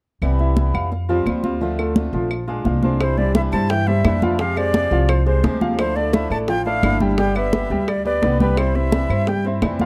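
Boxy picked guitar, thumpy pizzicato upright bass up front, woody claves and thick-skinned, high-tuned congas open this relaxed Cuban son and guajira excerpt, soon joined by intimate grand piano arpeggios with audible action noise, before a breathy, reedy concert flute with vibrato and tape echo takes the melody at 3.0 seconds over tight background bongos, all in a dry, close 1970s-style small-room sound.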